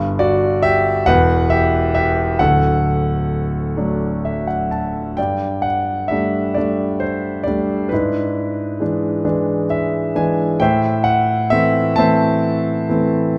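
Dark, warm production in a reverberant recital hall frames this tender, peaceful excerpt of lyrical classical solo piano in G major, where a clear, intimate concert grand with deep bass, long sustain and audible action noise sits up front at 44 BPM in a rubato 6/8, adding fills at 3.8 and 9.2 seconds around a new section that opens at 5.2 seconds.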